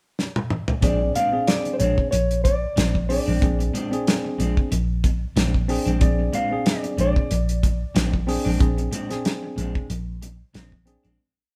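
A short fill on a dry, damped 70s drum kit opens this laid-back, gritty soul blues at 0.2 seconds, leading into the head at 0.8 seconds, where the band settles on a single Bb9 chord. The drums play a funk groove up front, with a tight kick, a medium-tuned snare and a rolled-off top, while a foam-muted fingered bass adds a round, punchy syncopated riff anchored on Bb1. Above them, a clean lap steel carries the melody with slide call phrases built from short motifs between C5 and F5. A tine electric piano heard through a combo amp pushes rootless chords, and an electric guitar at the edge of break-up adds twangy, compressed funk-strummed stabs in jazz chord shapes. The band plays live in a stone room with moderate reverb, and the piece fades out from 8.6 seconds until it ends at 11.2 seconds.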